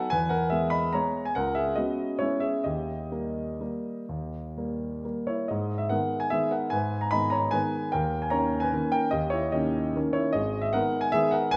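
A single grand piano sits up front in a moderate scoring-stage reverb with a 1.8-second decay, its tone warm and natural. This is a classical piano waltz in G# minor, in 3/4 with a rubato feel that lets the tempo drift between 119 and 159 BPM, and the mood is sparkling and playful. The solo piano spans G#1 to B5 in this fragment cut from a longer piece, tuned to A4 = 442 Hz. The opening passage moves through E, C#m7 and D#. At 5.5 seconds a second section begins on G# minor, passes through D#7 and arrives back on G# minor at 10.4 seconds.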